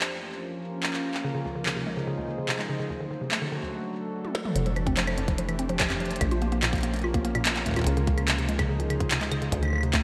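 A straight 4/4 IDM groove of clicky hats, tiny snare, claves, handclaps and toms from an up-front glitchy kit with gated reverb carries a wistful, glitchy mood, as a warbling, detuned tape-like pad sustains mellow chords, a woody, round FM mallet pluck with chorus and delay spins arpeggios from 1.2 s, and after a drum fill a rubbery, resonant acid bass and a tight electronic kick drop in at 4.6 s and 4.9 s, all set in a lush hall reverb with bright 1980s-style digital sheen.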